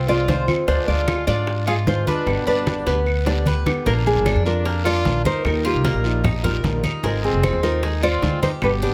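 A fingerpicked classical nylon-string guitar carries the melody in this danceable excerpt of Cuban son and guajira at 151 BPM in 4/4, joined by a clear, punchy trumpet with light vibrato on a second line, a bright metallic Cuban tres picking double-string arpeggios, an up-front woody pizzicato upright bass with thumpy gut strings, a boxy swing-style guitar with fresh strings in the background, thick low-tuned congas, soft-handed saturated bongos, a raspy guiro and distant woody claves in a large room, set in a dry, detailed mix that moves from Fm through Ddim and G, then after a drum fill from 2.9 s to 3.9 s shifts to Bb, Ebadd9 and Ab6.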